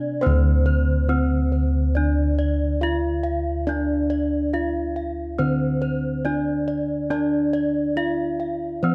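A straight 4/4 pulse at 70 BPM carries this ceremonial, shimmering Javanese gamelan fragment, where a bright, up-front bronze metallophone struck with a horn mallet rings out the melody, a second metallophone played with a wooden mallet spins softer arpeggios an octave higher through tape echo, its paired tuning producing shimmering beats, and round, beating bossed gongs anchor the bass, all heard through close, detailed microphones with light reverb across the 8.9-second excerpt.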